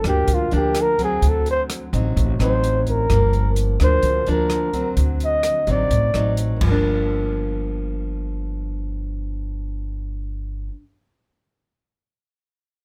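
Bossa nova with a wistful, intimate mood, cut from a longer piece and moving between Gm7 and D7b9. A breathy flugelhorn carries the melody up front with light vibrato, scooped notes and a plate-reverb sheen, over fingerpicked nylon-string guitar, a woody, thumpy pizzicato upright bass and an airy jazz kit of rim click, hi-hat, boomy kick and dark crash cymbal. The flugelhorn stops at 6.4 seconds and the drums at 6.7, leaving guitar and bass to carry the next section in a close, detailed recording.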